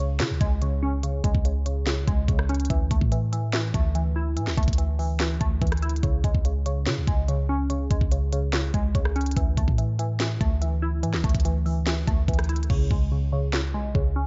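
Melancholic and menacing, this half-time trap cut at 144 BPM in C# phrygian sets a glassy, detuned wavetable pluck with chorus and a low-pass filter over a deep, boomy 808-style bass and a knocking, up-front trap kit with crisp hats, sharp snare, rim clicks and crash, moving between C#5 and Dsus2 in a dry, dark mix until the hi-hats drop out and the pluck gets a filter sweep at 12.7 seconds.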